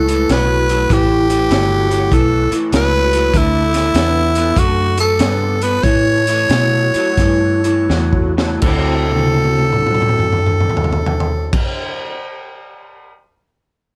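A raspy, growling tenor saxophone leads this soulful, rollicking electric blues shuffle in D mixolydian from the very start. It is backed by a slightly broken-up, lo-fi guitar riff with ensemble chorus and a round, foam-muted fingered bass, and a saturated, gritty breakbeat kit with dark cymbals, a high-tuned snare and a punchy kick joins at 0.1 s. The swung 4/4 groove moves between 79 and 99 BPM, slowing down from 3.3 s, and drum fills lead into a new section at 8.6 s over A13, D69 and D9 chords, all in a small room ambience with the sax and drums up front.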